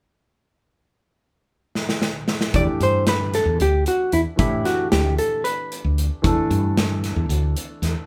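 This progressive instrumental excerpt in E minor feels tense and driving, moving in a straight 7/8 at 227 BPM counted in eighths. A big acoustic rock kit enters at 1.8 seconds with a fill, its punchy kick, medium-tuned snare and hi-hat sitting up front in a moderate studio room. At 2.5 seconds the band settles onto an Em7 chord. A woody, round fretless electric bass holds the low register, and a warm, polished baby grand piano fills in the accompaniment. Above them, a clean, fingered hollow-body jazz guitar carries a dark melody until 6.0 seconds, sounding close and present, as if the group is playing live together in one room.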